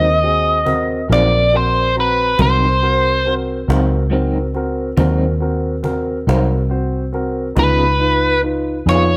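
A swaggering, rollicking slow blues in 12/8 at 46 BPM, this short excerpt sits in Ab mixolydian and moves from Ab7 to Db7 at 7.6 seconds. A biting, bright overdriven lead guitar carries the melody up front, over a round, punchy, foam-muted fingered bass, a present grand piano with long sustain, and a slightly broken-up electric guitar with tremolo through a small old amp in the background. A woody, distant cajon played with hard hands enters at 0.7 seconds, and light reverb gives the whole a touch of space.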